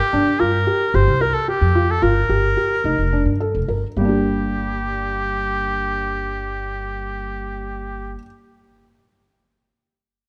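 A clear, up-front solo oboe with light vibrato carries a pensive yet urgent melody in this brief contemporary chamber cut in 7/8, over mellow, intimate arpeggios from a felt-muted upright piano and a woody, thumpy pizzicato upright bass on gut strings, with the pace slowing through the first 4.0 seconds as Gm7 gives way to G minor, all captured by close, detailed microphones in light reverb.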